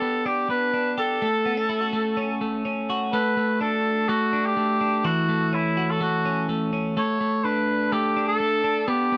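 Indie pop in a bittersweet, restless mood: this short fragment of a longer piece pairs a bright, twangy twelve-string electric guitar picking clean, compressed arpeggios up front with a mellow, classical-style solo cor anglais carrying the melody with vibrato and a distant, roomy tone, both sounding throughout over chords moving from G and F#m into Bm7 at 3.1 seconds, then F#m7 and back to Bm7, all captured in a dry, close 1970s-style studio sound with light reverb.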